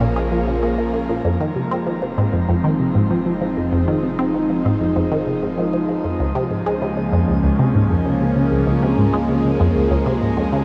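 A swirling, detuned analog pad and a juicy, squelchy blip pluck open this cosmic, mysterious ambient passage, both sitting up front from the first moment. The pad holds full-bodied sustained chords with a soft attack and long release, its wave-folded sawtooth and triangle tones treated with phaser and chorus. The resonant pluck plays a riff in a straight 4/4 feel, with a fast attack and short decay, its ring-modulated filter tone coloured by phaser and analog delay. Beneath them, a deep, round sine sub bass fades in from 1.2 seconds, as the harmony moves from Bbm7 to Fm7 and then to Db6 at 6.2 seconds. A moderate shimmer reverb and a dark, warm production surround the whole passage, which is cut from a longer piece.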